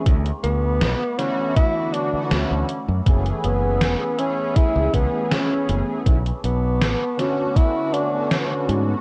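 Dreamy and faded, this vaporwave excerpt drifts through D6, F#m11 and Bm9 chords under a worn, warbling cassette haze with light reverb. A breathy, whispered tenor saxophone carries the melody up front with vibrato and scooped notes over mellow synth brass treated with phaser, chorus and analog delay, while a lo-fi, detuned pad sits in the background. Bright, punchy fingered electric bass, a thumpy electronic kick and a gated 80s drum machine with hi-hat and gated-reverb snare, both drum parts carrying 12-bit sampler grit, hold the groove.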